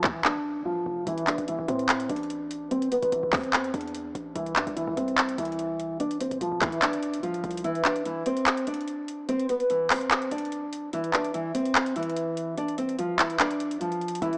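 A gritty, dry recording with transformer saturation, light reverb and a small-speaker sound carries this eerie, melancholic trap excerpt at 146 BPM in a half-time feel, cut from a longer piece. A dark, fingerpicked nylon-string guitar sits up front with the melody under a low-pass filter sweep through 7.6 seconds, moving through Dm, Am, C and Dm7 before settling on Cadd9/E, C and Dm. The trap kit's metallic hi-hats, handclaps and hard-clipped kick punch hard alongside a heavy, sine-based 808 bass with a noise layer, until the bass and kick drop out at 7.6 seconds and return briefly at 14.2.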